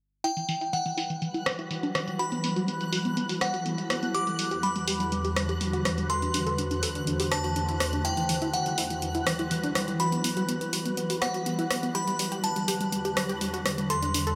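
A straight 4/4 pulse at 123 BPM drives this dreamy, expansive progressive house passage in E minor, cut from a longer piece, with a deep house drum kit up front from 0.2 s whose hi-hat sounds dark and filtered alongside a rim click, as if re-recorded in a small room. A tight sequenced synth, a detuned blend of sawtooth and pulse wave with a plucky filter, runs driving arpeggios from E3 to A4 under a filter sweep that lasts the whole passage, treated with chorus and tape echo. Above it, a crystalline FM synth bell carries the melody between F#5 and D6, its fast, decaying notes touched with chorus and tape echo. From 1.0 s a shimmering ambient pad holds ethereal, slowly evolving chords from E2 to C5, its granular sine tone given an octave-up shimmer, chorus, phaser and built-in reverb, while from 1.3 s a reversed, swelling texture sits in the background on a high F#6 with ensemble chorus. 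The harmony moves from Emadd9 through Gmaj7/E and D7/E before returning to Emadd9, and the whole mix is soaked in a huge ambient reverb with a 6.9-second tail.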